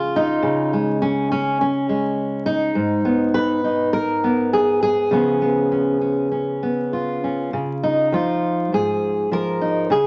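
A dark-toned, fingerpicked steel-string acoustic guitar with an auditorium-size body sits up front and plays alone throughout this gentle, peaceful folk piece, cut from a longer work, in Db mixolydian at a loose, rubato 102 BPM in 4/4. Its harmony moves from Db through Abmadd9 and Db7 before a new section opens on Dbadd9 at 7.5 seconds. Light reverb and a bed of vinyl crackle lend the recording an intimate, aged character.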